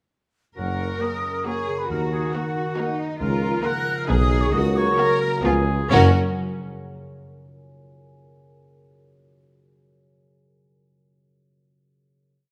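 Set in 3/4 at 135 BPM with uneven beats, this mischievous, whimsical F# major film cue opens at 0.6 seconds with hollow flutes and a distant oboe on a second line, dark French horns holding sustained chords, and ringing harp arpeggios. Underneath, a mellow tuba and a bowed double bass section double the bass line while a close cello section adds a smooth counter-melody. At 1.0 seconds the violins join with a lush, vibrato-laden melody and a clearer second line, and the violas add accompaniment, before the piece settles on a final F# chord at 5.9 seconds in a moderate scoring-stage reverb.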